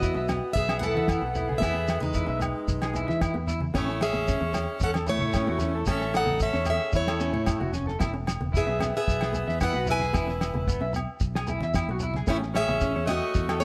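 Highlife guitar band excerpt at 113 BPM in E major, warm and sunny, where an up-front picked plugged-in steel-string acoustic guitar carries the melody with finger squeak over an edgy tenor saxophone second line with light vibrato, twangy slightly broken-up electric guitar arpeggios through a small old amp with slapback echo, a dark fingerpicked flamenco guitar in the background, a round punchy fingered electric bass, a cloth-damped thuddy drum kit with a fat snare and a fill at 7.6 seconds, grainy shekere, ringing agogo bells and low-tuned congas, all in light reverb with lossy compression artefacts.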